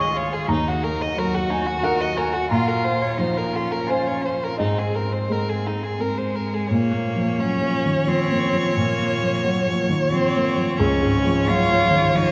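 Hopeful and tender, this short neoclassical passage for piano and strings moves in a rubato 3/4 at about 88 BPM, cut from a longer piece. A soft, felt-muted upright piano sits up front with intimate, mellow accompaniment, while a single bowed violin carries the melody close to the listener with focused vibrato, and a lone cello sings a second line with a rich, smooth top. The harmony drifts from Ebm to a closing Db chord at 10.8 s, heard through the wet cathedral reverb of a church or concert hall.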